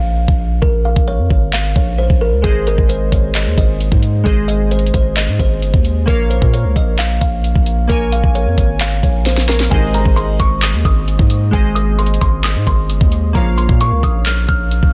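A woody, mellow kalimba melody opens this wistful, dreamy trap excerpt in Ab major, over a deep, long 808-style sine bass that hits with a fast attack and decays, and a trap drum kit joins almost at once. The beat runs at 132 BPM in a half-time 4/4 feel, with a knocking kick, sharp snare, metallic hi-hats, handclaps and crash cymbal sitting up front beside the bass. The soft, boxy-sounding kalimba stays lower in the mix, softened by a low-pass filter. At 2.4 seconds, quieter glassy digital keys enter with a sub octave, chorus and a filter sweep, while the harmony alternates between Bbm and Ab. A drum fill leads into a new section at 9.7 seconds, where a dark brass ensemble with light vibrato adds brief stabs through a digital delay, returning at 13.4 seconds from the background. The sound is dry, dense and heavily limited in a modern master.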